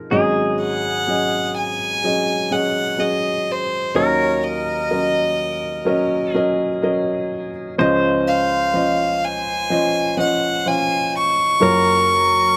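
Intimate and tender, this acoustic folk-pop ballad moves at an unhurried, straight 4/4 pace, and the passage is cut from a longer piece. A felt-muted upright piano opens at 0.0 seconds as the accompaniment, its mellow, muted tone and thin felt bringing audible action noise close to the ear, reaching from deep in the bass up into the middle register. A pedal steel guitar joins at 0.1 seconds as a quieter second line, electric, bright and twangy, played with fingerpicks and slide, with a clean, compressed sound and volume swells. From 0.6 seconds a single violin carries the melody up front, bowed sul tasto with a soft attack, its pure, floating tone sitting high. The harmony drifts through Ab7sus4, Ebm7, Dbmaj9 and Gbmaj7, tuned slightly below standard pitch at A4 = 438 Hz, and the close, detailed microphones with little reverb keep the whole performance near and personal.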